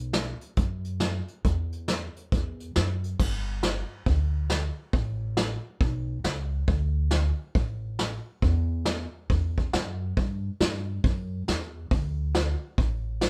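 A woody, thumpy upright bass on gut strings opens this down-home, nostalgic honky-tonk and classic country excerpt at 138 BPM with a swung 4/4 feel, joined at 0.1 seconds by a roomy brush kit with dark cymbals, a medium-tuned snare and a tight kick, the pair set in light reverb as if heard from further back in the room, with a new section arriving at 3.2 seconds.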